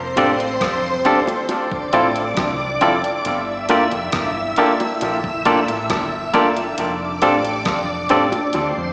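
Heard as a live gig through the venue's small-speaker PA and bathed in a lush hall reverb, this short cut from a longer lovers rock reggae piece moves at a relaxed 68 BPM in G dorian, bittersweet and smooth across F6, Dm7 and Gm7. A vintage sawtooth string machine with ensemble chorus, dub echo and slapback carries a mellow, slow-attack second line above a dark, round fingered dub bass, while a barky tine electric piano and a bright, twangy picked guitar add accompaniment and stabs, both soaked in dub and slapback echo. In the background, a thumpy, tape-toned 8-bit drum machine with kick, hi-hat and rim click sits under dub echo, joined by low-tuned bongos played with soft hands.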